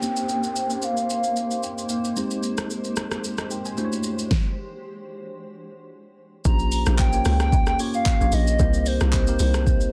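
Amapiano at 112 BPM in Bb dorian, this deep, late-night excerpt swings lightly over an up-front deep house kit with a deep kick, fat tape-warm snare, handclaps, rim clicks, hi-hat and shaker, while a worn, slightly out-of-tune tine electric piano plays phased, filtered chords through a combo amp and adds a short fill. A hollow, woody clarinet-like synth lead sounds briefly at the opening. A cloudy, blurred granular pad holds sustained chords until 4.3 seconds, as a faint background downlifter falls in the first seconds and a filter sweep runs on through a stop that begins at 4.3 seconds. At the drop at 6.5 seconds, a bouncy, percussive log drum bass with a fast attack and quick decay arrives under the returning clarinet-like lead with vibrato, chorus and digital delay, all inside a dense, heavily limited modern master.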